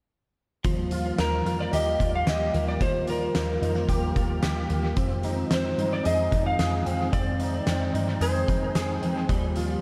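An echo-heavy mix with light studio reverb carries this floating, blissful dream pop excerpt at 111 BPM in Eb major, where a dark, slightly broken-up electric slide guitar sings the melody over twangy, compressed clean guitar arpeggios soaked in ensemble chorus and tape echo, a plucky, funky analog bass with a filter-pluck snap, mellow, flute-like tonewheel organ chords turning through a slow rotary speaker, and an oversized, low-tuned drum kit with a fat snare and punchy kick sitting up front in a bright, pumping stone room, all moving from Ebadd9 to Fm7 at 5.0 seconds and back.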